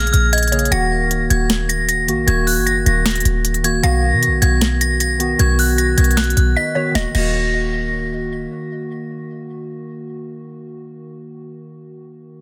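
A ringing, metallic FM bell carries the melody through chorus, phaser and delay in this brooding, dark trap excerpt in Eb minor at 154 BPM with a half-time feel, over warbling, vintage lo-fi synth keys washed in chorus. A punchy, up-front 808-style bass and an electronic kit with a sharp snare and crisp hats drive the beat, while a hollow, bouncy square pluck with chorus and delay adds a second line from 0.3 s. After a brief break at 6.6 s, the drums stop by 7.3 s, the bell and pluck end at 8.1 s and the bass at 8.5 s, and the keys then linger alone until 12.4 s, all within a dense, heavily limited digital ambience.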